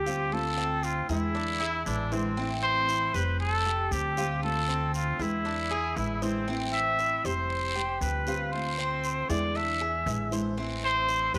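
A breathy trumpet carries the melody up front, its soft attack, gentle vibrato and whispered, intimate tone giving this sultry Cuban son and guajira excerpt a vintage pop feel. It moves at 117 BPM in straight 4/4 in A minor, cycling through Dm7, E7 and Am with touches of Fadd9 and Fsus2. A second, clearer trumpet adds short punchy lines with scooped notes, first at 1.6 seconds and again at 5.7 seconds. Beneath them, a fingerpicked nylon-string guitar supplies classical accompaniment with audible finger squeak, while a Cuban tres picks metallic arpeggios on its doubled strings. A woody, thumpy upright bass plays pizzicato in the dark low register, and a raspy guiro sits close and dry in the background. A moderate echo-chamber reverb gives the ensemble a warm, roomy glow.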